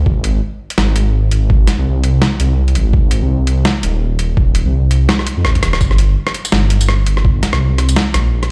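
Tense and heavy, this half-time drum and bass cut, lifted from a longer piece, rides a swung sixteenth-note feel under a deep, rumbling detuned saw bass that sounds saturated, beating and dark, sitting up front from the first second. A thumpy, overdriven electronic kick adds grit with a compressed, sampler-style punch. A boom bap sampler-style kit, also up front, brings hi-hat, rim click, a medium-tuned snare and tambourine, re-recorded in a small room, with a drum fill at 5.1 seconds, while the whole mix sounds as if played on a big sound system in a bare room.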